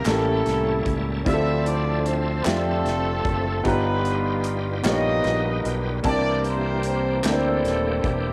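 A slow 6/8 gospel sway at 50 BPM carries this reverent, uplifting fragment of a longer piece, with a punchy acoustic drum kit and very quiet, crisp group handclaps setting the pulse beneath a dark, round fingered electric bass that sits up front. A mellow, tight horn section with vibrato and octave doubling sings the melody over a clear, intimate grand piano whose action noise is audible, while a shouting tonewheel organ holds full chords through a slow rotary speaker, chorus vibrato and key click. The horns, piano, organ and drums carry a cassette-tape grain, and a moderate spring reverb gives the home recording its glow as the harmony moves from A7b9 to Dm9 at 1.3 seconds, G7alt at 3.6 and C13 at 6.0.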